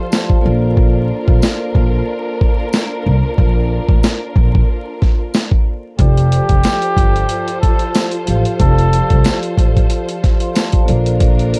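Boom-bap hip-hop at 92 BPM with a warm, confident swing, cut from a longer piece, where an up-front, gritty, pitched-down sampler drum kit with a thumpy kick and high-tuned snare, a woody pizzicato upright bass, mellow soft-mallet vibraphone with slow motor vibrato, lush bowed string stabs and a jingly tambourine in the background carry a Bbmaj9 break before a veiled, breathy cup-muted trumpet enters at 6.0 s over F6, all in a dry, crackling vinyl-tinged mix.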